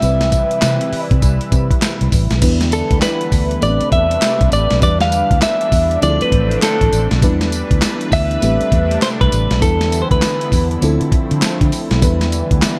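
A light reverb gives this punchy, confident new jack swing excerpt a polished sheen, with the drums sitting up front. At 100 BPM in 4/4 with a swung sixteenth feel, a dusty, sampler-style kit drives the groove with a thumpy kick, a medium-tuned snare, handclaps, hi-hat, tambourine and crash cymbal, all gritty and compressed under a gated reverb. A vintage muted fingered electric bass supplies a dark, round, amped low end, while an FM electric piano with a soft pad layer adds dreamy, mellow chords through chorus and shimmer reverb. A lush unison pad, thick and airy with a slow attack, holds sustained chords colored by chorus, phaser and shimmer reverb. Over this, a clean fingered electric guitar carries the melody with delay and shimmer reverb until 10.7 s, as the harmony moves from Cmaj7 into a repeating cycle of Em7, Am11 and Dm9 that settles on Em7 at 12.0 s.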